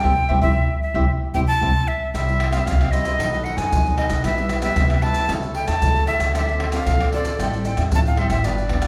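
An airy metal flute leads this joyful, lively excerpt of samba and choro, playing the melody up front with a bright, straight tone, a crisp attack with audible chiff and a slightly unsteady line. Beneath it, a mellow picked cavaquinho and a thumb-plucked classical nylon-string guitar share the accompaniment, while a pizzicato upright bass with steel strings gives a woody, thumpy foundation. Surdo, maracas, pandeiro and tamborim drive the straight 4/4 groove, with a tight surdo and soft hands, sounding distant as if in a large room yet still up front. The whole band plays an accent together through the opening 2.1 seconds before moving into a new section, and across the excerpt the harmony travels from C through B7, Em/B and A/C# to Dm7 and Am7. A wet recital-hall reverb fills out the sound, giving the ensemble the feel of a church or concert hall.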